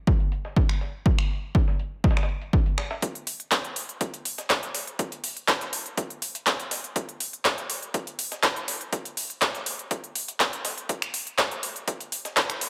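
A punchy, overdriven electronic kick sits up front from 0.1 s, with a gritty, pitched-up breakbeat kit of hi-hat and medium-tuned snare tucked in the background, in this driving, expansive house drum passage cut from a longer piece. At 0.7 s a big-room dance kit joins, its crisp hats, handclaps and finger snaps overdriven and placed up front, with both the kick and this kit re-recorded in a large room. From 3.0 s the pattern becomes a build-up that runs to the end, all within light reverb and digital ambience.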